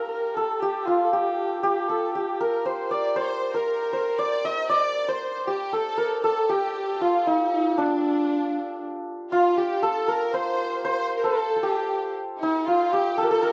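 Persian modal ensemble music at 117 BPM in a straight 3/4, hypnotic and melancholic, cut from a longer piece. A hammered santur carries the melody up front with a shimmering, ringing tone, while a nasal, boxy kamancheh plays a close, intimate second line with light vibrato, portamento and an airy bow. A lush symphonic violin section joins at 3.2 seconds on another second line, smooth-topped and expressive, all set in a wet studio reverb, with a new section arriving at 9.3 seconds.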